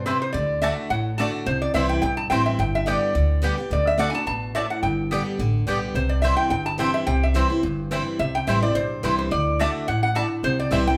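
Captured as a band playing live in one room, with a moderately large studio reverb, this lively, joyful bluegrass excerpt swings its eighth notes over a D, C and G progression. Up front, a lap resonator guitar played with fingerpicks and slide carries the melody in a metallic, nasal voice, while a picked steel-string acoustic guitar supplies bright accompaniment. A pizzicato upright bass on gut strings adds a dark, thumpy, woody bottom, and a double-strung mandolin punctuates the groove with picked stabs.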